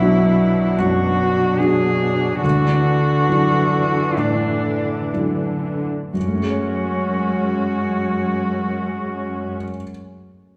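A solo muted cello carries the melody up front in this moving, bittersweet cinematic fragment in F# minor, its con sordino tone veiled and dark, with light vibrato, a soft attack and portamento. A felt-muted upright piano accompanies with an intimate, mellow sound and short sustain, its action noise clearly audible, and it rings on briefly after the strings stop at 9.6 seconds, ending at 10.6 seconds. Beneath them, a muted studio viola section adds a smooth-topped ensemble layer, while a muted studio cello section holds the bass with a close, bowed tone and vibrato. The rubato 4/4 pulse moves between 58 and 79 BPM and slows through the opening 6.1 seconds as the harmony passes from Bm to Dadd9, then settles on F#madd9 in the second section. A recital hall reverb with a 1.5-second decay gives the piece a spacious, church-like ambience, and it is cut from a longer piece.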